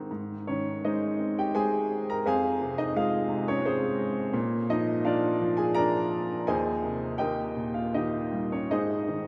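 Lyrical classical solo piano in a hopeful mood: a warm, boxy baby grand sits up front and plays alone for the full 9.3 seconds, moving in a flexible, rubato triple metre across a range from Eb2 to Bb5. Its harmony passes from Ab through Fm and Bb before settling on Eb and coming home to Ab at 8.7 seconds. The piano sounds as if in a vast cathedral, drenched in long, echoing reverb, in this brief fragment cut from a longer piece.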